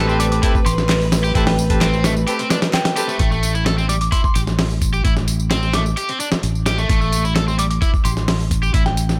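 A straight 4/4 breakbeat groove at 130 BPM drives this funky, swaggering cut in A minor, built on a gritty, compressed, sampler-style drum kit with a thumpy kick, an up-front fingered electric bass holding A1, and tape-toned electronic tambourine and handclaps sitting low beneath. Over an Am9 chord, a clear, biting string section pumps against the beat in the background while punchy horn stabs and an overdriven stack guitar riff ring out with dub echo, the strings and horns dropping away at 3.2 seconds as the harmony falls to a chordless stretch. Throughout, a crystalline FM synth bell traces a high melody with chorus, dub echo and an old-record tint, all set in a digital ambience.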